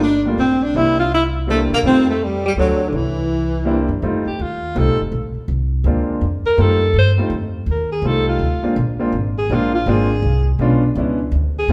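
A live, one-room sound with a generous large-studio reverb frames this relaxed small-group swing and bop jazz in a swung 3/4, cut from a longer piece. A breathy alto saxophone carries the melody up front beside a subtoned tenor saxophone second line that stops at 3.9 seconds, while a woody, thumpy pizzicato upright bass and a deep-bassed concert grand piano, entering at 0.3 seconds, support changes moving from Gm7 through F7 and Bb7 to a closing Bdim7. From 4.0 seconds the alto takes a smooth-topped solo with light vibrato.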